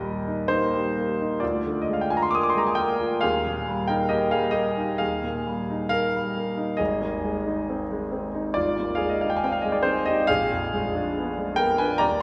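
Classical romantic nocturne for solo piano in E-flat major, tender and nostalgic, moving at 62-70 BPM in 4/4 with a rubato feel. The warm grand piano sits up front with a present tone and long sustain, ranging from Ab1 to Eb6, surrounded by a wet concert hall reverb that lingers for 2.4 seconds. This 12.2-second excerpt from a longer piece moves from Eb through Bb7/D, back to Eb and on to Ab before arriving on a Bb7b9 chord at 10.3 seconds.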